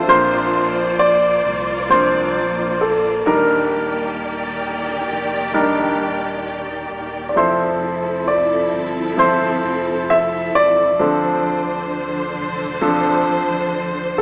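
A clear baby grand piano, a studio string section and a deep sub bass with octave open this tender, hopeful pop ballad together, and a second piano carrying the melody arrives at 0.1 seconds. Set in F major at a slow 66 BPM in a straight 4/4, the piece moves through Bbadd9, Ebmaj7, Fmaj7 and Dm7 across its 14.2 seconds. The melody piano sits up front with a warm, polished tone, singing in a narrow upper range, while the accompanying piano stays clear and present beneath it. The bowed string ensemble holds sustained chords with expressive vibrato and portamento and a smooth top, also placed close to the listener. The sub bass stays mellow and full, with a fast attack, sitting low under the harmony. A generous concert hall reverb gives the whole a church-like spaciousness, though the overall sound has the narrow character of a small speaker, and the recording is cut from a longer piece.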